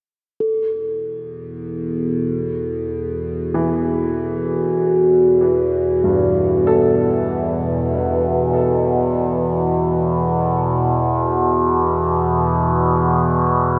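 Dark ambient drone at 48 BPM in E minor, ominous and cavernous, where a soft, metallic bronze singing bowl rings in the background from 0.4 seconds, an up-front sawtooth-and-sine drone with moving overtones, chorus and its own reverb swells in at 1.6 seconds on a sustained E minor, and a clear, open concert grand piano with deep bass enters at 3.5 seconds playing arpeggios through a diffuse ambient delay, all soaked in a lush hall reverb in this excerpt cut from a longer piece.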